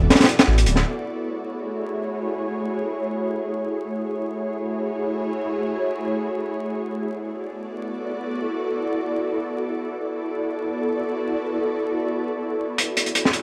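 Opening on an ethereal, chorused pad over an E7sus4 chord, with a deep, rumbling detuned saw bass and a crunchy, saturated breakbeat kit of hi-hat and high-tuned snare that both stop by 0.8 seconds, this raw, dark drum and bass and jungle fragment in F# minor then leaves the airy, reverb-washed pad to sustain F#m7 and E7sus4 chords alone in free time, under plate reverb and vinyl crackle, until the kit returns at 12.8 seconds.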